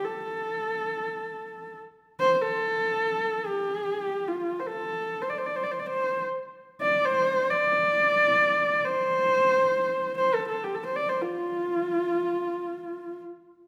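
A dark, husky horsehead fiddle opens alone in this short excerpt of Mongolian traditional music, a single bowed player moving in free time through the F gong mode between F4 and D5. Its woody horsehair tone sits up front, colored by vibrato and portamento, and carries a galloping, vast mood. A wet recital hall reverb surrounds the fiddle, which stops at 13.2 seconds.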